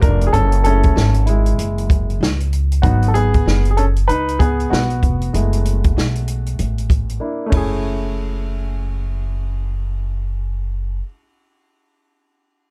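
A swung groove from an open jazz drum kit, with a boomy kick, medium-tuned snare, dark-toned hi-hat and ride, and a natural small-room sound, carries this mellow, nocturnal jazz-hop fragment until the drums stop at 7.7 seconds. A woody, growly pizzicato upright bass sits up front underneath, while a polished, present grand piano takes a solo through the first 7.8 seconds over a chord progression built mostly on minor-seventh chords. The dark production has very little reverb, and every part sounds close.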